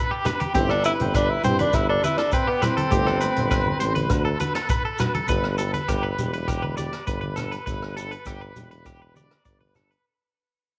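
A subtoned tenor saxophone with jazz vibrato and scooped notes carries the melody from 0.5 to 4.4 seconds in this warm, danceable highlife guitar band excerpt, over a twangy, slightly broken-up electric guitar playing arpeggios with tremolo and tape echo, a full-bodied fingerpicked nylon-string guitar in the background, an up-front tuba bass with light vibrato, a vintage drum kit of hi-hat, punchy kick and rim click, bright low-tuned congas, a grainy shekere and faint ringing agogo bells, set in light reverb and studio ambience before a fade-out from 5.3 seconds.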